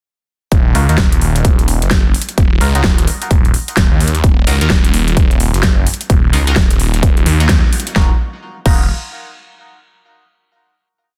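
A punchy, overdriven four-on-the-floor kick drives this short, complete bass house piece at 129 BPM in 4/4, with a 61% swing on the 16ths giving it a bouncy, swaggering feel. A big-room dance kit enters alongside it at 0.5 seconds, adding metallic closed and half-open hats, a huge snare on the backbeat and crash cymbals, all with overdrive and a small-room ambience. Up front sits a swirling, thick detuned saw bass in Eb minor, playing chopped phrases between Eb1 and Eb2, saturated through tube warmth and phaser and pumping against the sidechain. Higher up, a band-passed, nasal chord stab with ring modulation plays sparse, echoing hits from 0.8 seconds over an Ebmadd9 harmony, moving one chord shape in parallel through phaser, subtle chorus and digital delay. After a band accent at 7.5 seconds, the drop gives way at 8.0 seconds to a final chord, all within a dense, heavily limited modern master with little reverb.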